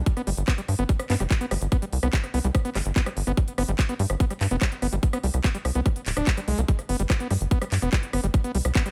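Psychedelic trance excerpt, intense and driving in straight 4/4, where an up-front electronic kick with reverb and a punchy, nasal sawtooth sequencer bass with filter pluck drive beneath crisp hats, handclaps and rim clicks from a layered, tape-warm kit, while an overdriven acid bass riff, squelchy and gritty with a resonant filter sweep, pumps with sidechain and delay over a G5 chord in a digital ambience.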